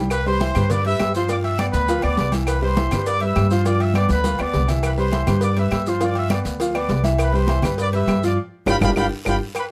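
A clear grand piano and an up-front upright bass open this sunny, danceable salsa excerpt at 203 BPM in C major, the piano's open tone and long sustain ringing over the bass's dark, thumpy pizzicato gut strings. A bright jazz-style trumpet section carries the melody almost at once, its light vibrato and smooth top gleaming above the band. Behind them sits a full percussion bed: damped, thin-skinned congas, a tight high-tuned cowbell, ringing metal-shelled agogo bells and timbales, woody claves, a raspy guiro and grainy, saturated maracas. The harmony rests on Cmaj7 until a G7 arrives at 8.4 seconds with a band accent, while drum fills at 4.0 and 9.0 seconds punctuate the phrase. Close, detailed miking and a moderate studio reverb keep the sound crisp and lively.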